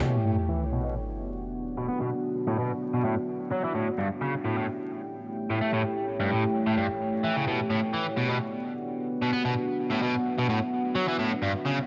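An electronic impact and sub drop open this gritty, swaggering breakbeat excerpt alongside a bright, overdriven, double-tracked electric guitar riff played up front, shaped by a low-pass filter sweep that runs throughout and an analog delay. Alongside it, a deep, moody ambient pad, also up front, holds sustained sawtooth chords with a slow attack, chorus and its own reverb, moving between Bm and A7. The sub drop and riser effects return at 11.2 seconds, and the dry hardware sound carries vinyl crackle and a small room's reverb.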